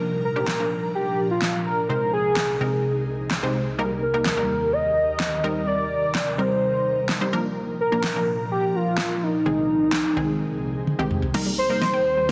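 A straight 4/4 pulse at 127 BPM drives this upbeat, summery dance-pop excerpt in Eb major, with an electronic, produced drum kit entering at 0.5 s and sitting up front with a fat snare, handclaps, crash cymbal and toms, plus a drum fill just before the final bar. From the first moment, a punchy, detuned sawtooth unison pluck carries the accompaniment with a fast attack and decaying notes, while an ethereal, airy pad with a slow attack and long release holds sustained chords beneath, colored by ensemble chorus and its own built-in reverb. At 0.2 s a velvety, wave-folded synth lead takes the melody between Eb4 and Eb5, smooth and sustained with vibrato, chorus and digital delay, placed prominently at the front of the mix. The harmony moves through Bb, Ab/C, Eb and Cm7 before returning toward Eb, and at 11.3 s a very quiet, bright, warbling vintage pluck adds arpeggios. A moderate plate reverb opens up the space, and the dense, heavily limited modern master keeps the sound full and polished.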